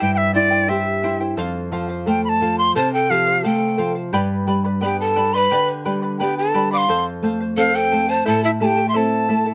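Andean folk in 2/4 with a festive yet wistful mood, led by an airy cane quena with vibrato and a soft attack sitting up front, over a fingerpicked nylon-string guitar with a classical cast and a shimmering charango whose double strings include some octave pairs. At 2.8 seconds a breathy, mellow bamboo pan flute enters with a tongued, chiffy second line colored by expressive vibrato. Chords move from C through F and G back to F before settling on Am, all captured with close, detailed microphones and little reverb in this short section cut from a longer piece.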